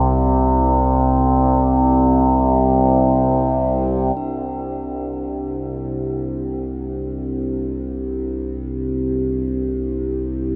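An ominous dark ambient drone fragment in free time opens with an up-front, resonant sawtooth-and-sine drone whose moving overtones sweep through chorus and its own reverb, pitched from C2 to C3 with a slow attack and long release inside a vast, wet space, until at 4.2 s a close-miked, dry bronze singing bowl struck with a wooden striker rings on D4 in the background with a bright, metallic, meditative tone and slow beating over a Csus2 harmony that lasts to the end at 10.6 s.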